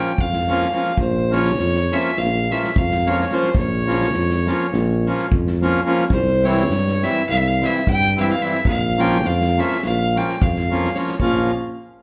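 In a straight-feel 9/8, this bittersweet, virtuosic Balkan wedding-band piece puts a biting, nasal, bowed fiddle up front on the melody over reedy, hollow accordion accompaniment, joined at 0.2 s by a mellow, classical-style tuba bass and an acoustic drum kit of punchy kick and medium-tuned snare played with bundle sticks, the band performing live together in one room bathed in a large, wet studio reverb.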